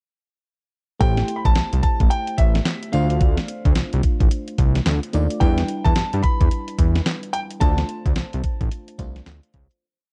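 A clean 12-bit drum machine anchors this slick, bouncy new jack swing piece, its thumpy kick and fat snare layered with handclap driving a hard-swung beat up front alongside a thick, saturated analog bass line of detuned sawtooth tone, filter sweeps, muted ghost notes and chromatic approach notes. A glassy, bell-like FM electric piano holds chords through chorus and phaser beneath a clear baby grand piano playing a free, polished melody. The dark production sits in digital ambience, and the piece fades out from 7.6 seconds to its close at 9.8 seconds.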